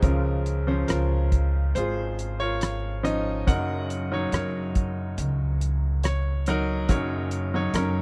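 A dry, tender acoustic folk-pop ballad at 70 BPM in 4/4, cut from a longer piece, opens with a bright, polished concert grand piano carrying the heartfelt melody up front over a woody, thumpy pizzicato upright bass with gut strings and a cloth-damped, thuddy drum kit of dark hi-hat, tight kick and rim click, the chords moving from Db6 to Gb6 at 3.5 seconds before the piano adds a fill from 5.6 to 6.9 seconds.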